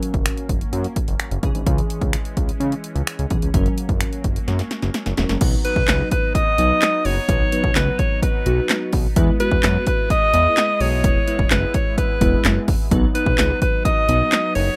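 This upbeat, carefree dance-pop piece in B major moves at 128 BPM, opening with a punchy, tape-toned house drum kit up front, glassy chorused digital keys and a fat, detuned analog bass, both pumping against the kick, while an airy, evolving filtered supersaw swell holds sustained chords in the background. After a drum fill at 4.5 s, a bright, forceful alto saxophone takes the lead up front at 5.6 s, its vibrato-tinged pop-style line carried on delay and plate reverb. The sound is a rough home demo mix with light reverb, cut from a longer piece.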